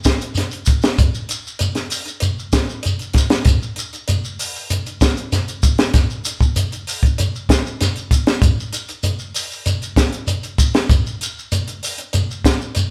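Funky and intense, this short afrobeat cut from a longer piece sets a shekere and a compact cocktail drum kit playing together live in one room, bathed in a wet studio reverb. The grainy, mellow shekere starts at 0.0 seconds, and the dark, smooth kit follows at 0.1 seconds with hi-hat, a punchy kick and a high-tuned snare. Both parts sit up front for the whole of the passage.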